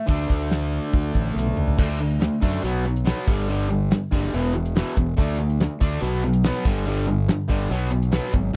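A dry, close 1970s-style studio sound puts every part up front in this swaggering, driving classic rock excerpt at 142 BPM in a straight 4/4. A bright, double-tracked distorted guitar picks a riff over chords moving from D5 through B5, G5 and E5. It is anchored by a growly, punchy fuzz bass and a cloth-damped, thuddy kit with dark cymbals, a fat snare and a tight kick, whose fill from 1.4 to 1.8 s kicks the music into its longer second stretch.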